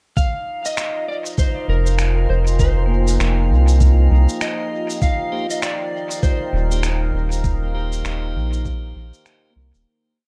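Spacious and hazy, this short ambient dub piece in F minor moves at 99 BPM with a swung groove, built on a soft, thumpy kick up front, a sparse echoing beat of muffled shaker and finger snaps, and a round, nasal analog bass entering at 1.7 seconds, while a slightly broken-up electric slide guitar plays echoing call phrases over a moody, detuned pad and a glassy drifting-overtones texture, with hard-mallet vibraphone loops drifting against each other in the background and a piping tonewheel organ adding sparse, gritty chord stabs from 5.3 seconds as the harmony shifts from Fm7 to Eb6 and the whole piece fades out from 6.6 seconds.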